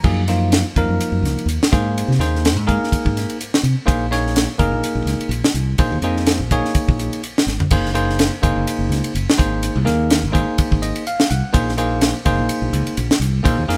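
A bell-like tine electric piano, a growly fingered electric bass and a tight funk drum kit with a high-tuned snare and dry, up-front sound start together in this slick, bright stretch of electric jazz fusion, cut from a longer piece and played with a swung sixteenth-note feel in 4/4. The clean piano and the punchy, direct bass move through chords from Gbmaj7 and Abadd9 to Bbm11, Bbm9 and finally Bb9sus4, with the band playing live together in a moderate stone room. The drums play a fill at 7.5 seconds, and the electric piano adds a short fill from 10.6 to 11.5 seconds.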